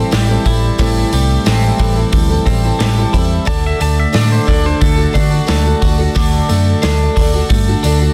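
This folk rock and heartland rock excerpt moves at 89 BPM in a straight 4/4, with a wistful, dusty mood, and sits on an Am7 chord before shifting to D at 3.5 seconds. A picked twelve-string acoustic guitar provides boxy, shimmering, octave-doubled accompaniment with an archtop character. A clean, compressed twelve-string electric guitar plays the riff. A dark, round hollow-body short-scale bass, picked and amped, sits prominently underneath. The vintage acoustic drum kit plays hi-hat, kick and snare up front, with a punchy kick, a medium-tuned snare, a rolled-off top and a pumping small-room sound. Between 3.5 and 6.5 seconds a bright pedal steel guitar, played with fingerpicks and slide, adds a quieter second line with volume swells, all within small room ambience and a dense, heavily limited modern master.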